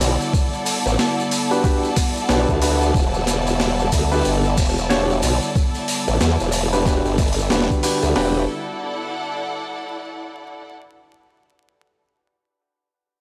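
Glitch hop at 92 BPM in E minor with a funky, gritty swing, this excerpt from a longer piece opens its drop on an Em7 chord, where a saturated formant-sweep wobble bass sits up front beside two overdriven, pitched-down boom bap sampler kits with a thumpy kick and high-tuned snare, while grainy, distant maracas, a warbling lo-fi tape-like pad with sampler grit and sidechain pumping, and lush bowed symphonic strings fill out the texture. A dark, mellow baby grand adds tape-echoed stabs from 1.5 seconds, and the strings carry on into a short closing section from 8.2 seconds, playing alone after 8.5 seconds, all wrapped in dry hardware saturation and vinyl crackle.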